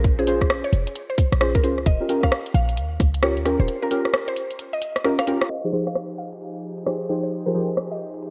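UK garage with a swung two-step feel, moody and bouncy, where an overdriven, up-front kick and a garage kit of hi-hat and rim click drive the groove beside a punchy, short 808-style bass until the kick drops away at 3.1 seconds and the bass at 3.7 seconds, while dark, chorused chord stabs and a woody, round mallet-like pluck with tape echo carry harmony and melody, and a breathy pad with sidechain pumping arrives at 6.0 seconds as a filter sweep runs, set in a lush hall reverb with the muffled haze of a home cassette recording.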